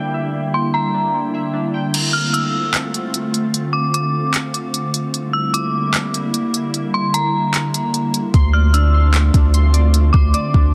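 Hazy and ethereal, this excerpt of atmospheric cloud-rap at 150 BPM in a half-time 4/4 feel in D minor sets a glassy FM pad's sustained chords and a dark detuned synth bell's eerie, inharmonic melody over warbly lo-fi keys arpeggios, with a smooth R&B drum kit of handclaps, hi-hat and crash entering at 1.9 seconds and its soft kick joining the deep, sine-like 808-style bass at 8.3 seconds, all in a dense, heavily limited modern master with digital ambience.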